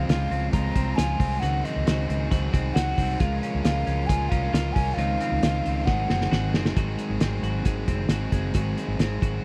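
A breathy, mellow jazz flute opens this breezy, youthful snippet of jangly indie pop, sharing the first moment with a biting overdriven guitar, a twangy twelve-string electric guitar and a vintage muted fingered bass, as a cloth-damped drum kit falls in just after. At 135 BPM in a straight 4/4, the flute carries the melody with vibrato and tongued notes, sounding distant and hollow, until it drops out at 6.5 seconds. Beneath it, the overdriven guitar supplies picked accompaniment while the bright, clean, compressed twelve-string picks out arpeggios over a shifting Dbmaj7, Ab7/Db, Bbm7/Db and Fm7/Db progression that turns to Ab7. The bass sits up front, dark, round and foam-muted, and the thuddy, lo-fi drums are the loudest element, with a fat snare, tight kick, saturated grit and a rolled-off top, playing a fill from 5.9 seconds that leads into a new section. The whole thing has the dry, close feel of a 1970s studio with little reverb, and it is cut from a longer piece.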